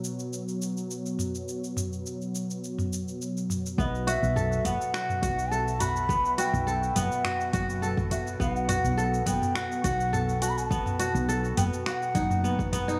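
A detuned, warbling analog pad holds sustained chords with lush chorus and sidechain pumping, joined by an overdriven afro-pop kit of finger snaps, metallic hi-hat, shaker and toms in studio reverb, setting a meditative, mystical organic downtempo mood in this section cut from a longer piece. At 3.8 seconds the groove fills out: a breathy, mellow bamboo bansuri carries the melody through tape echo, a crisp, ringing kora plays up-front arpeggios, a dark, round fretless bass pumps beneath them, and a deep, overdriven electronic kick joins the kit. Light digital ambience wraps the whole mix.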